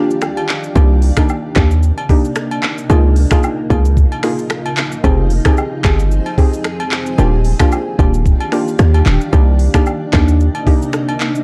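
Hypnotic and mellow, this afrobeats clip opens with a brief break before the 808-style bass arrives at 0.8 seconds and settles the groove into its main section. The electronic afro-pop drum kit sits up front with a knocking kick, smooth hats, finger snaps, handclaps, rim clicks and shaker, all carrying a vintage 12-bit sampler grit over a lightly swung feel. The hard-hitting bass is punchy and heavy, a sine tone with a noise layer, a fast attack and a decaying tail. A soft, round pluck with chorus and plate reverb plays gentle accompaniment, while a cloudy granular pad holds blurred, detuned sustained chords that pump against the beat and drift through Cm9, Db69 and Fm7 before returning to Ebmaj9. Woodblock and agogo bells add a faint acoustic, small-room texture beneath the dark production, which carries light reverb.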